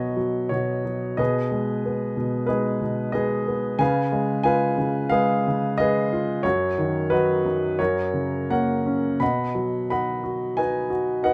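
A concert grand piano plays solo from the first moment, intimate and up front, shaping a lyrical classical passage in B major at 90 BPM in 4/4 with a rubato feel. Its deep bass and long sustain sit in light reverb, and the mechanical noise of the action stays audible. The harmony moves from Badd9 through G#m/B and C#7 to B/F# and F#, settling on B at 9.2 seconds, in a warm, hopeful passage cut from a longer piece that lasts 11.3 seconds.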